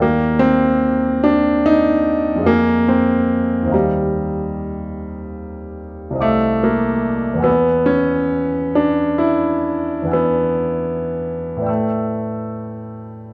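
Flowing in a slow 9/8 with dotted-quarter beats of roughly 37 to 50 BPM, the rhythm bends freely under a rubato touch, giving this short 13.3-second passage from a longer classical work a serene, hazy drift. A single concert grand piano carries everything as the solo voice. It spans from C2 up to E6, with a deep bass and an open, up-front tone that sounds warm and close. The harmony moves through lush extended colours, opening on Ebmaj9, passing through Fm7, Eb69 and Cm11, then shifting to Eadd9 and settling on A9sus4 at 11.7 seconds, all in impressionist style. Detailed microphones capture the instrument intimately, while a moderate recital hall reverb with a 1.5-second decay adds a soft glow around each chord, and the tuning sits slightly high at A4 = 441 Hz.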